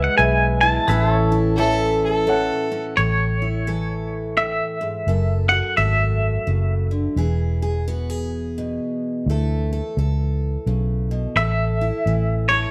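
A twangy, compressed electric guitar carries the melody up front in this nostalgic, down-home honky-tonk waltz in classic country style, its tremolo, plate reverb and tape echo ringing until 6.9 seconds before it returns at 11.4 seconds. A bright, full-bodied steel-string acoustic guitar and a round, foam-muted electric bass play throughout, while a dark, woody upright piano and a background pedal steel guitar with volume swells and slide fill only the opening seconds. A clear, earthy fiddle adds a brief second line on a single note near the start of this piece cut from a longer performance.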